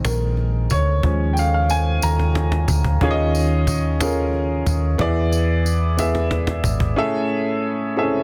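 Uplifting and hopeful, this slow gospel passage is cut from a longer piece and moves in an unhurried 6/8 at 61 BPM. An up-front upright piano with a natural tone and long sustain takes the spotlight for the first 3 seconds, carrying the harmony through lush suspended ninth chords before arriving on a major seventh chord at 7 seconds. A fingered hollow-body short-scale electric bass, also up front, adds a dark, round, amped low end. A close, woody cajon with faint snares keeps the beat and adds fills, while a jingly, bright tambourine sits quietly in the background with a close, dry sound. The bass, cajon and tambourine drop away around 7 seconds, so the piano closes the passage alone, all set in a small room ambience with a dense, heavily limited modern master.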